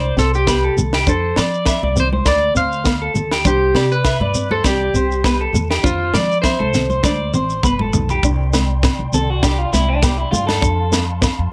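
A twangy, slightly broken-up electric guitar carries the sunny, carefree melody up front in this highlife guitar band excerpt in C major at 100 BPM with a light swing, set against a bright, lo-fi second electric guitar playing arpeggios with tape echo, thumb-plucked classical nylon-string accompaniment and a woody, thumpy pizzicato upright bass. A tight funk drum kit with a high-tuned snare sits up front beside a grainy, close and dry shekere, while ringing agogo bells and soft-handed congas fill in behind them. The melody guitar drops out at 7.6 s, a drum fill leads into a clean electric guitar solo at 8.2 s, and a soft, flute-like tonewheel organ with key click and chorus vibrato adds sustained chords in the background, all in a small room.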